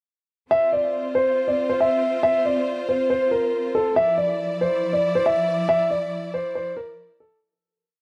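A dark grand piano leads this short drill-flavored hip hop piece, its mellow, intimate tone softened by a low-pass filter and marked by audible action noise as it repeats a looping melody like a sampled phrase. Behind it, a bright studio string section holds sustained, bowed chords with vibrato, sitting quieter in the mix yet sounding close and intense. The whole breakdown moves in a half-time feel with an ominous, cold mood, and the harmony shifts from an F chord to a D minor add-nine color at 4.0 seconds. Light reverb and a small room ambience frame the dark, warm production, and the music fades out from 5.7 seconds to its end at 7.4 seconds.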